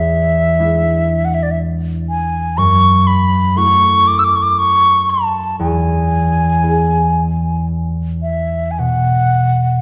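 Pastoral and wistful, this short excerpt from a Celtic slow air unfolds in 3/4 at roughly 55-61 BPM, with a loose, rubato feel that lets the phrases breathe. A bright baroque flute carries the melody throughout, its wooden, airy tone colored by vibrato and tongued notes, with a slightly unsteady quality that gives it a human, intimate character. Beneath it, a concert harp provides accompaniment for the full 9.8 seconds, its mellow, thumb-plucked strings ringing out in the lower and middle registers. Both instruments sit up front, with the flute slightly more prominent than the harp. The harmony moves from E7 to F#m7, settles on E at 5.6 seconds, and closes on a B5 chord, all bathed in the lush reverb of a recital hall or church.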